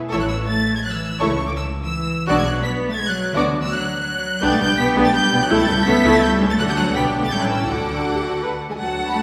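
Spirited and cheerful, this quick classical-period movement for string orchestra moves at 167 BPM in 3/4 with a straight feel, starting in A major and settling into D major from 4.4 s. The first violins carry the melody high above the ensemble, their clear, intense tone sitting up front with vibrato even as the section sounds somewhat distant. Beneath them a second violin section plays a focused second line, while the violas supply smooth, even accompaniment with a lush, rich body. The cellos and double basses share the bass, the cellos clear with light vibrato and the basses bright and focused a little lower in the mix. All five sections play together from 0.1 s to 9.2 s, and the harmony moves through chords such as Bm, G/B and A7 before landing on D at 7.7 s. A wet concert hall reverb places the listener further back in the room, and the passage is cut from a longer piece.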